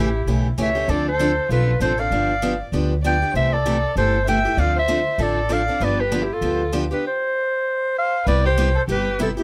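Swung eighths drive this playful, charming fragment of acoustic string swing, where a raspy, growling clarinet carries the melody up front over a bowed violin's expressive second line with portamento, a bright, boxy picked steel-string guitar with finger squeak, and a woody, dark pizzicato upright bass, captured by close, detailed microphones with little reverb.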